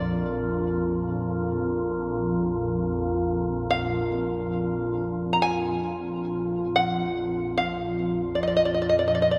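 In this haunting, spacious piece of meditative world music, a mellow, plunky fingerpicked open-back banjo carries the melody up front over a detuned, organ-like pad that drones low with ensemble chorus and its own built-in reverb. A glassy, ethereal glass harmonica adds a smooth, slow-blooming texture until it drops out at 8.7 seconds, while the banjo and pad carry on to 9.4 seconds. A wet church reverb with a 3.0-second decay lends the whole a vast, resonant space, and the passage is cut from a longer piece.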